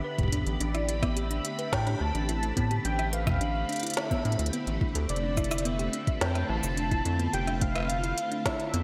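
Cerebral and glitchy, this 107 BPM IDM excerpt sets a velvety, detuned synth lead melody over silky string-machine chords with phaser and ensemble chorus, round tine-like thumb-piano plucks in arpeggios, and a bubbling, resonant stepped-filter texture in the background, while a rubbery, bouncy square bass sits up front and an overdriven soft electronic kick and an organic electronic kit with woody snare, smooth hats, rim click and cabasa in gated reverb enter at 0.2 seconds, all moving through Em7, Am7 and Fmaj7 in a lush hall with bright 1980s-style digital sheen.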